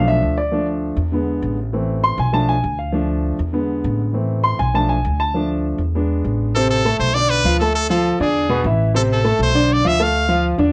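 Heard through worn, warbling old cassette tape with light reverb, this fiery, danceable salsa fragment opens with a smooth, vintage grand piano taking a solo over a woody, thumpy pizzicato upright bass on gut strings, cycling through a minor progression of Bm7b5, Dm, E7 and Am. At 6.5 seconds a brilliant, punchy trumpet enters up front with forceful, pop-style vibrato, carrying the melody until 10.5 seconds while piano and bass keep driving beneath it.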